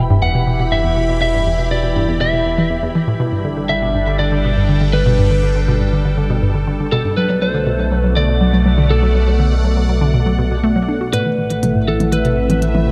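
A straight 4/4 pulse drives this mysterious, hypnotic slice of sequencer-driven ambient space music: a hollow, bouncy square-wave pluck riff with chorus, phaser and tape echo sits over a round, deep analog bass and an airy, resonant sawtooth pad of sustained chords with chorus, while a slightly broken-up electric lead guitar carries a tape-echoed melody; a minimal kit of clicky, overdriven hi-hat and toms enters at 11.1 s as the harmony moves to Am, and a twinkling granular texture surfaces, barely audible, at 12.6 s, the whole piece set in a moderate plate reverb within an echo-heavy mix.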